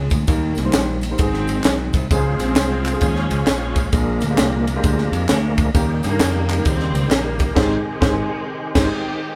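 Soulful and reverent, this short uptempo gospel passage swings gently in four, with a punchy, up-front fusion drum kit (high-tuned snare, airy cymbals) and a bright, direct fingered electric bass driving beneath a woody upright piano that rings with long sustain. A lush, distant string section carries the melody with expressive vibrato and portamento, while a thick, lightly overdriven tonewheel organ with key click and fast rotary speaker enters at 2.1 s to hold sustained chords, and dry tambourine, tube shaker and group handclaps sit in the background. The chords move through Dbmaj7, Bb7 and Eb7 before the full band hits an accent on Abmaj7 at 7.6 s, all set in a moderate room reverb.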